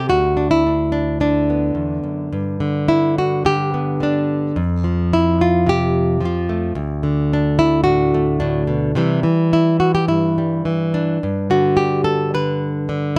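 A fingerpicked nylon-string guitar, warm, classical in character and placed up front, plays alone through this gentle, pastoral folk fragment cut from a longer piece, moving freely in rubato over chords such as D6, G, F5, D and C under a light reverb.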